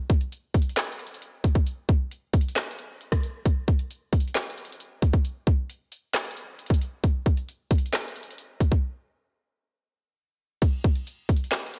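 An electronic trap drum kit sits up front in this brooding, eerie hip hop fragment, running from 0.1 to 11.8 seconds at 134 BPM in 4/4 with a half-time feel. Its hard-clipped kick, woody snare, metallic hi-hats, rim clicks, handclaps and crash cymbal fill a digital ambience, with a break from 8.8 to 10.6 seconds before a new section begins.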